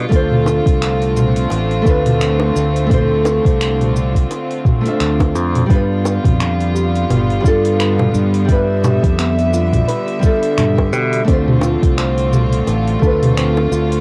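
Relaxed and wistful, this sunset chillout excerpt sets a dark, woody fingerpicked nylon-string guitar with sampler grit and analog delay against earthy bowed chamber strings with light vibrato, a bright, up-front fingered electric bass, a soft electronic kick, a smooth R&B kit of finger snaps, metallic hats, shaker and toms, tight high-tuned bongos in the background, and a soft round pluck that enters at 5.7 seconds with gentle arpeggios, all moving from Dm7 to G7 and back under a homespun cassette haze in a small room.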